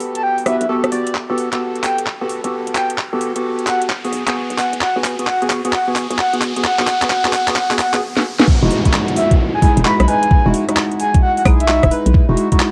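Two-step UK garage at 131 BPM in 4/4, with a 65% swing on the sixteenths, gives this bouncy, soulful cut from a longer piece its skipping gait. Percussive organ stabs, hollow and up front, carry lush chorus, cassette tape colour and analog delay over Gmaj9 and then B5, while a breathy, flute-like synth lead with soft attack and vibrato sustains high above, from E5 to B5, treated with chorus, tape and delay of its own. Underneath, a dark, hollow FM bass knocks with punchy, fast-decaying notes, and the garage kit layers cracking snare, metallic hats, claves, rim clicks, handclaps and crash cymbal. The first 8.5 seconds build with a background riser and drum fills, then the drop lands on Emaj9 as a tape-warm electronic kick enters up front, the loudest element in the mix. The whole track sits in a moderate studio reverb with the slightly worn character of a home cassette recording.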